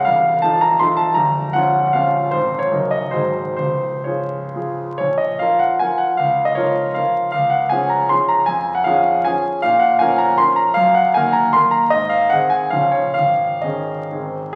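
Dotted rhythms drive this romantic triple-time dance, played with rubato so the pulse bends gracefully and proudly. A solo concert grand, clear and polished with a deep bass, sits up front, and a new section begins at 5.0 s before this fragment of a longer piece breaks off at 14.6 s. A wet recital-hall reverb surrounds the piano, and the sound of a very old 78 rpm record, with its vinyl crackle, gives the whole a vintage patina.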